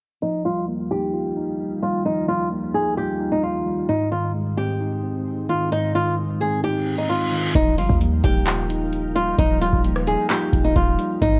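Triumphant yet wistful, this half-time hip hop and trap fragment is cut from a longer piece and opens on a fingerpicked flamenco guitar melody, up front with audible finger squeak. It is set over a mellow tine electric piano moving between Ebadd9 and Ab, both parts muffled by a low-pass filter during an opening filter sweep. A glassy FM pad enters at 0.6 seconds, slow-blooming and ethereal with ensemble chorus and its own reverb, sitting far in the background. A reverse cymbal from 6.8 seconds leads into an impact at 7.6 seconds, where a booming analog drum machine arrives with deep kick, metallic hats, handclaps and rim clicks, joined by a boomy, sine-based 808-style bass with a noise layer. The whole recording carries light reverb and a worn cassette character, its warbly pitch drift lending the sound a hazy, old-tape feel.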